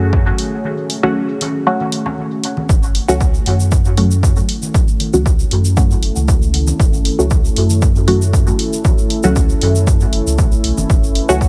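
This dub techno excerpt in F# minor opens on three parts at once. A dark, detuned sawtooth pad holds sustained chords with chorus. A muted, filtered chord stab carries chorus, phaser and dub echo. A round sine sub bass sits beneath, and all three pump against the sidechain. A punchy, tape-colored electronic kick arrives up front almost immediately, joined by an analog electronic hi-hat and very quiet, overdriven, layered congas. A break runs from 0.6 to 2.7 seconds, after which a grainy, bright acoustic shaker enters, close and dry. At a steady 117 BPM in straight 4/4, the cavernous, nocturnal groove rests on a single F# minor chord, with little reverb, so the stab and kick stay forward while the moody pad lies deep underneath.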